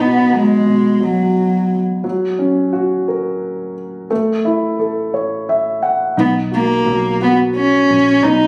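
Captured on a phone in a small room, with light reverb and compression, this heartfelt six-eight pop ballad in B major sways at 58 BPM. A woody, nasal cello carries the bowed, vibrato-rich melody up front, pausing after 1.8 seconds while the deep-bassed concert grand piano keeps up its short-sustained accompaniment and adds a fill before the cello returns at 6.2 seconds. At that point a round, foam-muted electric bass slips in low beneath them.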